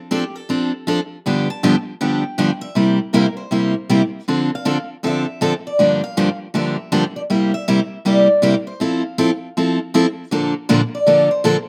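A lively swung 4/4 at 159 BPM drives this playful jazz fragment for two picked steel-string acoustic guitars, cut from a longer piece. A warm, parlour-toned guitar carries the melody in the upper register, while a brighter, up-front accompaniment guitar with fresh strings, audible finger squeak and a slapback echo plays beneath it through a chord run of G7, C7 and Dm7 toward Fmaj7. Both guitars sit in light reverb with an open-air feel, and the harmony moves to Bbmaj7 at 10.3 seconds as a new section begins.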